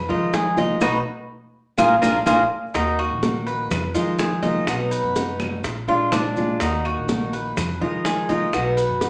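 A straight 4/4 groove at 124 BPM drives this danceable, sultry Cuban son and guajira excerpt in Eb harmonic minor, where an up-front, metallic double-stringed tres plays arpeggios over an up-front, boxy fingerpicked old ladder-braced acoustic guitar and a dark, thumpy pizzicato upright bass, while grainy, close maracas and bright high-tuned congas, tight bongos and woody claves in the background fill out the rhythm, all in a wet large-studio reverb, with a band accent from 0.8 to 2.7 seconds and a drum fill at 2.5 seconds.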